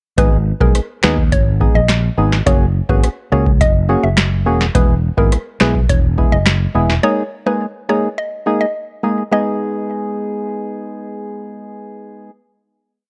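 The booming analog drum machine stands out up front, its deep kick, crisp snare layered with finger snaps, metallic hi-hats and rim clicks laying down a syncopated dancehall beat where the snare answers the kick. This is a short, hypnotic and tough dancehall piece in G# minor at 105 BPM, moving through G#m, F#add9, E and D#sus4 before landing back on G#m. A growly, punchy fretless electric bass with an amped warmth plays syncopated low lines with slides, and both bass and drums stop at 7.0 seconds. A hollow, percussive organ stab with a fast attack and decaying tail carries syncopated chords through chorus and sidechain pumping, ringing on to 12.3 seconds. On top, a woody, round mallet-like synth pluck sings a syncopated hook through chorus and phaser, with the whole recording carrying a dry, gritty hardware character in a digital ambience.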